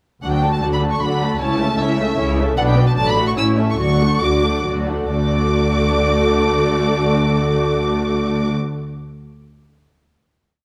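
A short, spirited classical-period movement for string orchestra in triple time with a rubato feel, played entirely by muted sections with a veiled, con sordino tone. A dark, lush first violin section carries the melody with vibrato and a soft attack, while a second violin section and a distant viola section share a rocking two-note figure and sustained chords, and the cellos play bass on the beats, doubled by a warm double bass section. The brief theme slows from 2.0 seconds before settling at 5.1 seconds onto a final chord, all bathed in the wet reverb of a recital hall.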